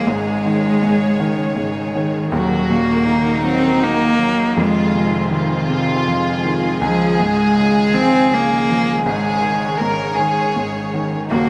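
A single bowed cello carries the melody up front with a soft attack, light vibrato and an airy, intimate sul tasto tone, giving this heartfelt, romantic pop excerpt in 6/8 its emotional center. A clear, polished baby grand piano accompanies beneath it while a lush string section holds rich sustained chords in the background, and at 2.3 seconds a reedy violin section with a gut-string, period-style sound joins with a second line. Light studio reverb and a dark, warm production wrap the progression as it moves from Absus4 through Ebm7, Fm7 and Dbadd9 before returning to Absus4.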